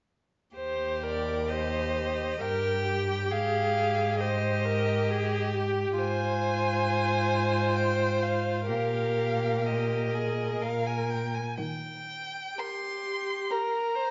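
The viola opens this slow, tender romantic movement for string quartet at 0.5 s, bowing a smooth, even accompaniment with vibrato. A second violin line and the cello join almost at once, and the first violin enters with the melody at 1.0 s. That melody sits up front, sung with a rich, vibrato-laden tone that stays lyrical and unhurried. The cello, also up front, anchors the bass with soft attacks, expressive portamento and a singing vibrato, before stopping at 12.4 s while the upper three voices carry on. Played in a gentle triple metre with flexible rubato, the passage sounds as though it is cut from a longer piece. It sits in a reverberant recital hall whose lingering decay and mellow, rounded top end wrap the ensemble in an intimate glow.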